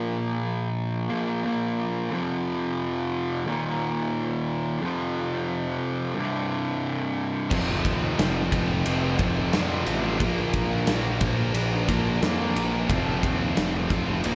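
Quiet-loud alternative rock at 89 BPM in 4/4 with an angsty, dark mood: a bright, compressed fuzz guitar opens alone, up front with slapback echo, playing a power-chord riff. At 7.5 seconds the band comes in, with a double-tracked high-gain guitar and a tight distorted guitar pushing their riffs from the background, and a growly, overdriven picked bass rumbling beneath. A big-room acoustic drum kit with a punchy kick, medium-tuned snare and bright crash and ride cymbals drives the section in light reverb until the cut at 14.3 seconds.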